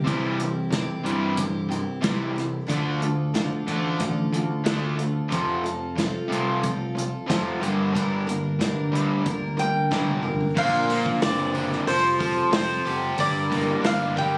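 A straight 4/4 groove runs through this folk rock and heartland rock excerpt, carried by an unplugged drum kit played with bundle sticks: a tight kick, a medium-tuned snare, hi-hat, toms and crash cymbal, with a drum fill at 9.9 seconds. The mood is open-road and warm. A round, dark, amped fingered electric bass sits under a shimmering, octave-doubled twelve-string dreadnought that is picked with audible finger squeak, while an overdriven, double-tracked garage guitar riff sits up front. A woody mandolin with double strings and analog delay takes the melody from 9.6 seconds. From 10.6 seconds a very quiet, flute-like tonewheel organ with key click and a slow rotary speaker holds soft chords as the harmony shifts from C, Dm, F and Gm to Bbadd9, Fadd9 and Gm. The sound is that of a phone recording in a club room, with light reverb.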